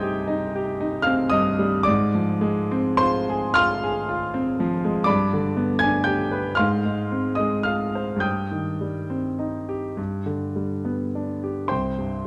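Wistful and mournful, this short cut from a romantic classical nocturne in C minor drifts in a slow, rubato 6/8 at about 34-42 BPM, its solo concert grand piano sounding clear, smooth and vintage, with deep bass and an up-front presence captured by close, detailed microphones, while a moderate recital hall reverb surrounds it and the harmony moves from C minor toward G before settling on an open C fifth at 11.7 seconds.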